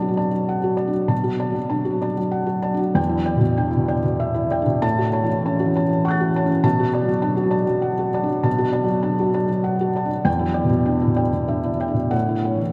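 A vast, echoing cathedral reverb surrounds this recording, with a long decay of about 5.1 seconds, while the felt-muted upright piano sits up front, close and intimate. This is a short fragment of neoclassical minimalist piano in B minor, wistful in mood, moving in a rubato 3/4 around 98 BPM and tuned slightly high to A4 = 445 Hz. The solo piano plays for the full 12.7 seconds and spans E2 to A6, its tone mellow and muted, with a vintage character and the soft clatter of its action audible. The harmony cycles through Bm7, Em7 and A6, returning to Bm7 at 6.6 seconds before repeating the progression. The close, smooth piano set inside that huge resonant space gives the piece a private, reflective quality.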